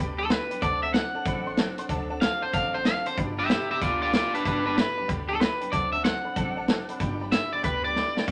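Rowdy and rollicking, this swinging rockabilly excerpt in G major races along at 188 BPM, with a twangy, slightly broken-up electric guitar carrying the melody up front over a punchy vintage drum kit, a woody, growly pizzicato upright bass, a full-bodied picked acoustic guitar and a jangly, detuned honky-tonk piano in the background, all in a wet small room, before a drum fill at 8.0 seconds.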